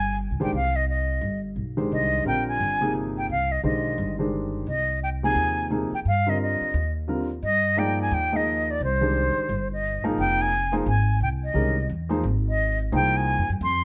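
An airy silver concert flute carries the melody in this cool, spiritual modal jazz excerpt, its tongued, unsteady notes colored by vibrato, set up front with a plate reverb around it. The tempo is a brisk 174 BPM in 4/4 with a swung eighth-note feel, beginning in C minor over a Cm9 chord before moving to F minor and an Fm11 at 10.2 seconds. An upright bass with steel strings plays pizzicato beneath, its woody tone sitting close to the listener. A baby grand piano enters at 0.4 seconds with natural, short-sustained accompaniment that is also placed up front. The whole is dark and warm, heard in a moderate club-sized room, and the clip is cut from a longer piece.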